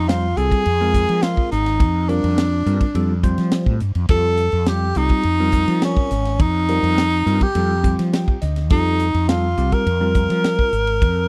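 Electric jazz fusion at 104 BPM in 4/4 with a straight, bright and funky feel, cut from a longer piece, where a warm tenor saxophone carries the vibrato-laden, close-miked jazz melody up front over a round, dark fretless electric bass. A tight funk drum kit with a high-tuned snare and tight kick drives the groove in a small, natural-sounding room, while a bell-like tine electric piano with phaser comps underneath and slips in a brief fill at 7.8 seconds. The harmony drifts through colourful chords such as Fadd9, Ab69 and Abmaj13, captured in a dry, close 1970s-style studio sound.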